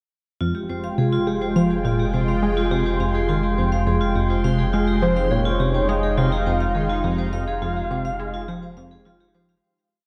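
From 0.4 s this expansive, mysterious piece of ambient, sequencer-driven space music in F minor at 104 BPM opens on an Fmadd9 chord, with a sweeping, evolving resonant pad with shimmer reverb, ringing metallic hard-mallet vibraphone arpeggios in a 5-step loop drifting against the bar, a tight, driving detuned sawtooth riff in a 12-step loop, and a deep, round sub bass holding F1, soon joined by a bubbling stepped-filter texture on a held high note, before a soft, mellow octave-layered synth lead with vibrato and cassette-tape color enters at 5.0 s with a free melody, all within an echo-heavy mix of wet spring reverb that fades out from 6.6 s.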